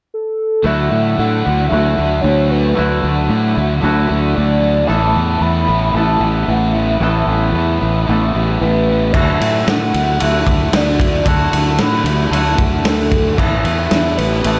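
A warbling, detuned synth lead with chorus and analog delay opens this hazy, wistful shoegaze and dream pop excerpt at 113 BPM in D major, carrying a mellow, nostalgic melody over Dadd9 and Asus2 as very quiet twelve-string electric guitar arpeggios, a crunchy overdriven guitar riff with subtle chorus, a twangy, scooped clean guitar riff bathed in reverse reverb and a round, up-front fuzz bass enter at 0.6 s, before a loose, gritty indie drum kit with dark cymbals and a punchy kick joins at 9.1 s in a light studio reverb.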